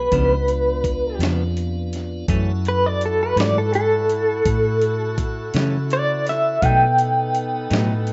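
A slightly broken-up, lo-fi electric guitar through a small old amp carries the tremolo-laced melody up front in this gritty, soulful slow blues at 55 BPM in 12/8, moving from C#7b9 to F#m7 and then B7. A dark, foam-muted fingered bass and a thumpy, compressed sampler-style drum kit hold the groove, while a bright, twangy clean guitar adds picked accompaniment with harmonic tremolo and a piping, scooped tonewheel organ sustains chords through a slow rotary speaker. At 2.3 seconds a distant, roomy saxophone section joins with light vibrato, all set in light reverb within a rough home-demo mix cut from a longer piece.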